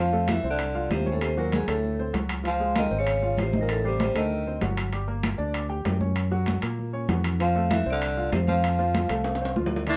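A moderate studio reverb frames this danceable, sophisticated Afro-Cuban jazz excerpt in F major at 194 BPM, where a dark, ringing vibraphone carries the melody over a growling, raspy baritone saxophone second line, both pausing between 4.6 and 7.4 seconds. Underneath, an intimate, slightly detuned upright piano with audible action noise comps throughout, while a bright, growly fingered electric bass sits up front. Compressed, high-tuned congas in the background and metal-shelled timbales drive the groove, capped by a drum fill at 9.3 seconds, as the harmony moves through chromatic chords like Ebm7, Dbmaj9 and D7b9 before returning home to F.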